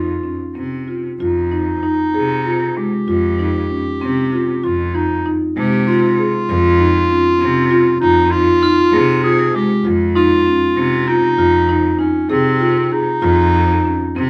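Set in a light reverb, this hypnotic, restless passage of contemporary chamber music in 11/8 pairs woody, mellow marimba arpeggios played with soft mallets with an up-front, clear clarinet carrying a soft-attacked second line and a rich, distant bowed cello with vibrato holding the bass, while a faint, bell-like glockenspiel rings in the background from 8.6 to 9.5 seconds.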